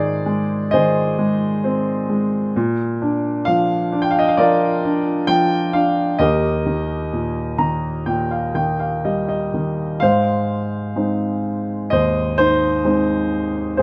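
A lone concert grand piano opens this brief fragment of a longer classical piece, playing a lyrical, peaceful line with a tender, unhurried rubato feel. The piano sits up front in the sound, with a deep bass reaching down low, an open upper register and a long sustain that lets each chord bloom and linger. From 7.1 s the piano adds a fill that leads into a new section at 10.0 s, where the harmony settles onto a fresh tonal centre and the music carries on until it breaks off at 13.8 s. Close, detailed microphones capture the instrument's warm body intimately, while a light reverb adds a gentle sense of space around it.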